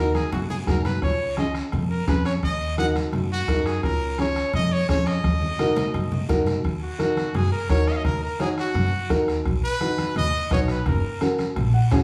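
Cumbia with a fiery, danceable drive, this short excerpt from a longer piece opens with a percussion fill that runs to 1.0 seconds before settling into a steady groove in 4/4. A bright trumpet carries the melody up front, its pop-style solo line shaded with light vibrato and scooped notes, and treated with slapback echo and plate reverb until it stops at 11.2 seconds. Beneath it, a worn, slightly detuned upright piano supplies woody accompaniment, while a dark, thumpy upright bass with gut strings plays pizzicato. The bombo sits close with a soft beater, the low-tuned congas ring thin-skinned and soft-handed in the background, and a raspy, saturated guiro adds a compressed scrape. The band is heard from further back in a small, reverberant room, with a second percussion fill leading into the closing section at 6.6 seconds and a brief piano fill rounding off the final moments.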